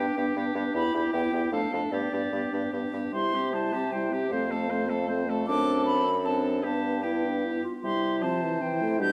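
An airy silver concert flute carries the melody high above the ensemble, its vibrato and soft attack giving a bright, expressive edge to this stormy, restless fragment of a quick classical-period movement for wind quintet. It moves at 153 BPM in 3/4 with a straight feel in C major, and all five players sound together for the full 9.1 seconds. A clear oboe sings a second line with light vibrato from a roomy distance, while a warm clarinet and a mellow, vibrato-touched French horn, also set back in the room, fill out the accompaniment. Beneath them a present bassoon with light vibrato anchors the bass. The harmony drifts from G through Em and Dm/F before settling onto C at 3.1 seconds, then moves through F, D7/F# and G to land back on C, all bathed in a recital hall's reverb of about 1.6 seconds.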